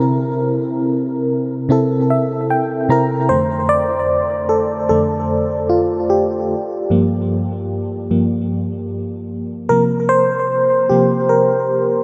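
Soaked in a huge, dreamy wash of ambient reverb, this late-night, moody R&B fragment with a lightly swung feel features a lone FM electric piano with tremolo and delay, its dark, up-front tone carrying a noise layer and fast, decaying attacks, adding a fill at 1.7 seconds before taking a solo from 3.3 seconds over chords that pass through C7, F6, Gm7 and C7sus4.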